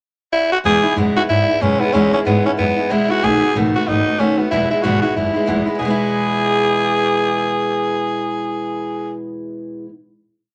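A growling tenor saxophone opens with a pickup at 0.3 s, its raspy, breathy tone carrying punchy hook phrases up front in this rowdy, upbeat rockabilly piece in E major at 187 BPM with a swung eighth-note feel. From 0.6 s a bright picked steel-string acoustic guitar strums eighths in open chord shapes while a woody, thumpy upright bass walks beneath it, moving from E to B7 and back to E before a final chord arrives at 5.8 s. A moderate club reverb gives the performance a lively room sound.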